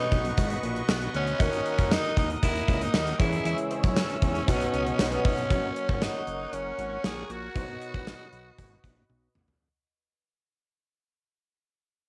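1980s-style pop with a romantic, glossy mood, this excerpt moves at 117 BPM in a straight 4/4, centred on F# mixolydian. A breathy, raspy tenor saxophone carries the melody up front with vibrato and a gritty edge, while a clear concert grand piano with a vintage, cassette-tinged tone sits in the background. A very quiet, crunchy overdriven guitar adds picked accompaniment until it drops out at 6.0 seconds, and a sweeping resonant pad holds sustained chords in a bright, airy, chorused layer with an evolving filter swell. A fat, detuned sawtooth analog bass gives thick, saturated support beneath a punchy gated 80s drum kit of kick, medium-tuned snare, hi-hat, tambourine and toms set in a polished stone-room sound. The harmony moves through Badd9, D#m, C#m/E and B, reaching F# as a second section begins at 5.5 seconds and returning to Badd9 at 7.6 seconds. A fade-out starts at 5.5 seconds and a drum fill closes the final moments from 9.1 seconds, all within a homespun cassette recording with moderate studio ambience.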